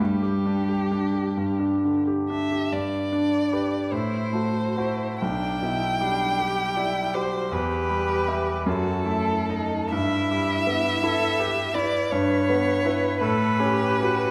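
Set in a reverberant recital hall, this tender excerpt from a slow, romantic piano-trio movement in G major drifts in 6/8 at 43-56 BPM with a flexible rubato. The violin sings the melody up front with a warm, expressive tone, soft attacks, vibrato and portamento, while the cello carries a smooth, even second line that sits more distant. The bright concert grand provides a polished accompaniment with deep bass and long sustain, moving through harmonies from G to E minor and settling on an A9 at 13.2 seconds.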